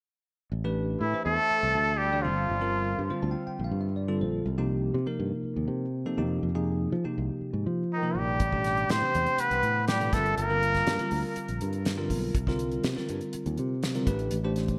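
Electric jazz fusion, driving and slick and cut from a longer piece, with a punchy fingered electric bass and a bell-like tine electric piano with subtle chorus carrying the extended chords, while a nasal straight-muted trumpet with vibrato and scooped notes leads over a soft, veiled cup-muted trombone second line, both with delay, in phrases from 1.0 s and again from 7.9 s for the trumpet and 8.0 s for the trombone, before a dry, damped 70s drum kit with a fat snare, tight kick and gated reverb joins at 8.4 s, set in a lush hall with bright 1980s-style digital production.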